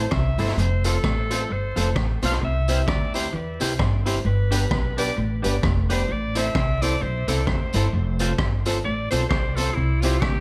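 A bright, punchy alto saxophone carries the solo throughout this upbeat, joyful ska fragment at 130 BPM, its forceful, scooped notes shaded with vibrato and a dub echo over a swung groove moving through Am, F, C and G. Up front, a woody pizzicato upright bass and a raw garage drum kit with a boomy kick, gritty saturation and a rolled-off top drive the feel on hi-hat, kick and rim click. In the background, a boxy upright piano adds short stabs and a clean picked electric guitar comps, while a second, very quiet guitar plays a low riff and a barely audible jingly tambourine joins, all under light reverb and vinyl crackle.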